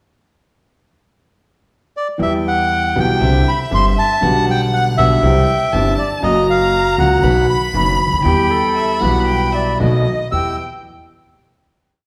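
A reedy, dark bandoneon stands up front in this short, complete tango, entering at 2.0 seconds to carry a motif-based melody built from period phrases in a tense, dramatic, rubato feel. Beneath it, a focused, bowed solo violin with vibrato traces a rich counter-melody. The grand piano, smooth and vintage in tone, sits forward in the mix, and with a woody, thumpy pizzicato upright bass on gut strings it drives the uneven three-and-two eighth-note tango rhythm. From 8.3 seconds, a distant, airy concert flute adds tongued, expressive answering phrases in the melody's rests as the harmony turns back toward its home minor chord. The piece closes on a final chord at 10.3 seconds, all of it set in the lingering reverb of a recital hall or church.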